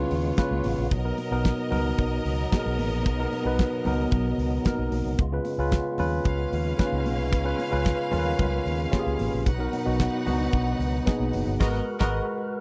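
Disco at 112 BPM with a sultry, danceable feel, this short cut from a longer piece sets a dry, up-front kit with a fat snare and tight kick against a bright, amped fingered bass through an envelope filter, a worn, slightly out-of-tune tine electric piano with light overdrive, a clear bowed string section with vibrato as a second line, a very quiet percussive tonewheel organ with key click and slow rotary speaker holding sustained chords, and ringing high-tuned congas, all moving between C#7 and Bmaj7 in a close 1970s-style room before a band accent on G#m9 at 11.6 seconds.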